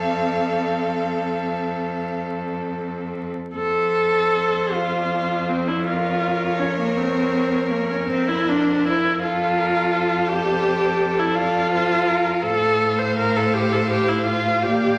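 Serene and warm, this fragment of a slow romantic string quartet movement in F major drifts in 12/8 at 44-57 BPM in dotted quarters, with a rubato feel and tuning at A4 = 438 Hz. Two violins carry the melody and a second line with focused, vibrato-rich bowing, the second line smooth on top, while an up-front viola fills the accompaniment and an intense cello holds the bass, all four playing from start to finish. The harmony moves from F to a darker Bbm/F at 5.9 seconds before settling back to F and F/A, all set in a reverberant recital hall with vinyl crackle.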